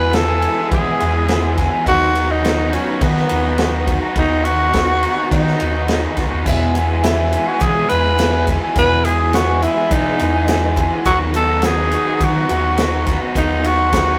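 Folk rock and heartland rock at 104 BPM in E major, nostalgic and hopeful, where a raspy, growling tenor saxophone carries the melody up front over a shimmering, octave-doubled twelve-string acoustic guitar in the background, a bright, overdriven, double-tracked garage guitar riff, a dark, round fingered bass, a natural country drum kit with a punchy kick, and very quiet bowed strings holding sustained chords, while a grainy tube shaker joins at 6.5 seconds in this rough rehearsal-room recording with tube saturation and moderate reverb.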